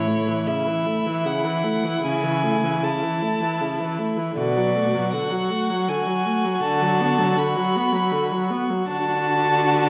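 A slow, serene string quartet in 3/4 opens with all four bowed voices together, the clear violin singing a smooth, even melody with vibrato over a dark, airy second violin line, a warm viola accompaniment gliding with portamento, and a rich, expressive cello bass. Taken at 78 BPM with a tender rubato feel, the harmony moves gently from A through A/C# and Bm7 to Bm/D before arriving on D at 8.9 seconds. The upper three players sit close and up front, and the whole quartet is framed by a recital hall reverb that lingers for 1.4 seconds.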